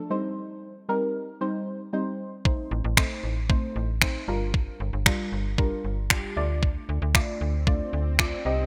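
Energetic and confident, this short dance-pop excerpt at 115 BPM opens with a deep, dark chord stab carrying chorus and sidechain pumping over Cm, Adim, Gm7 and Dm, joined at 2.5 seconds by a clean 12-bit drum machine with finger snaps and a thumpy kick, then moments later by a snappy, metallic slap-like FM bass that also pumps, while an electronic swell sits in the background from 7.4 seconds, set in a bright 1980s-style digital production with light reverb.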